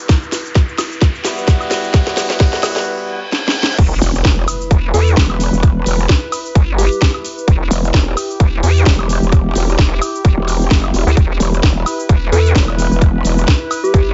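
The rhythm drives at 130 BPM in 4/4 with a 56% swing on the sixteenths, a tight, up-front electronic kick anchoring an overdriven house kit of cracking snare, bright hats, shaker, woodblock and crash, all set in a small room. This gritty, aggressive bass house cut in E minor opens on an Emadd9 build-up, where drum fills and an electronic riser climb under a nostalgic, lo-fi pad of detuned sawtooth and triangle tones, pumping against the kick with chorus and its own reverb. Between 1.2 and 3.2 seconds a mellow, distant horn section drops short stabs coloured by vintage 12-bit sampler grit, low-pass filtering and delay, before a brief break and reverse cymbal lead into the drop at 3.8 seconds. There an impact lands and the chord settles on Em as a nasal, resonant vowel-sweep wobble bass and a growling, bright unison growl bass take over up front, both tube-saturated, chorused and pumping. 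A round, gentle FM lead with a keys-like, decaying tone and a sub octave adds brief delayed phrases between G4 and A4, the last arriving at 12.3 seconds, while the whole mix sits in a dark digital ambience.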